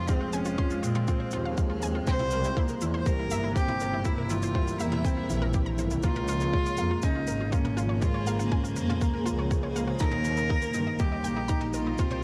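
A tight, tape-tinged electronic kick sits up front in this intimate, cinematic piano and strings electronica excerpt, with a light bed of brushed shaker and toms beneath it. A felt-muted upright piano carries the riff in a soft, dark, mellow voice, its thick felt and audible action noise giving it a vintage closeness. A bowed chamber double bass section holds the low end with focused, clear vibrato, pumping with the sidechain, while a single distant cello sings the melody with rich, bowed vibrato. In the background, a bright granular pad drifts through sustained chords as a blurred, detuned, evolving cloud, coloured by its own reverb, phaser and sidechain pumping. A round analog pluck spins bright arpeggios from 0.1 seconds, its detuned sawtooth and square tones dressed in chorus and delay, all set in a small room reverb.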